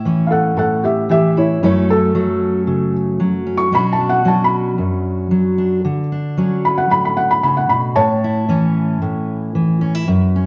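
Pastoral and warm, this short acoustic folk excerpt moves at 114 BPM in a straight 4/4, in A major, with chords drifting from A through F#m, Bmadd9 and Dmaj7 before returning to A at 8.0 seconds. A fingerpicked steel-string guitar with fresh, full-bodied strings carries the accompaniment up front for the full 10.5 seconds, while a felt-muted upright piano enters at 0.3 seconds to carry the melody in a soft, boxy, intimate voice with short sustain and audible action noise, stopping at 9.0 seconds. A large studio reverb washes over the whole piece, giving the production a dark cast.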